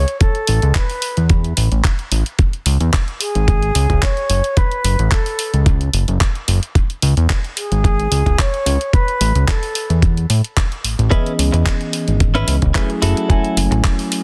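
An airy, mellow concert flute with digital delay opens this sleek, groovy nu-disco excerpt at 110 BPM in C# minor. It sits distant over a fat, detuned sawtooth analog bass with a filter sweep and a gritty, thumpy electronic kick, both up front, while a layered house kit adds handclaps and lightly swung hi-hat. The flute stops at 10.0 s, and at 11.1 s a clean tine electric piano played through a combo amp, with sidechain pumping and digital delay, arrives alongside a bright, twangy direct-recorded guitar riff with lush chorus and delay as the chords shift from Asus2 and F#m to C#m7 and F#m7, all in a dry, dense, heavily limited modern master.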